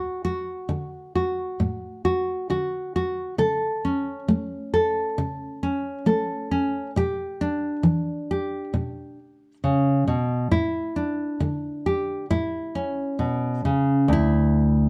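A lone nylon-string guitar opens the recording, fingerpicked and placed up front, with a full-bodied, deep classical tone. The piece is a peaceful, hopeful folk work for solo fingerstyle acoustic guitar, moving at an unhurried 67 BPM in a straight 4/4 feel and set in D major. The harmony travels from D through A/C# and Em7/B to Asus4, which resolves to A before settling on D5 at 14.1 seconds. The guitar ranges from D2 up to A4, spanning low bass notes through its upper register. A moderate studio reverb adds gentle space around the instrument, and the production as a whole is dark and warm. The recording is a short 14.9-second passage cut from a longer piece.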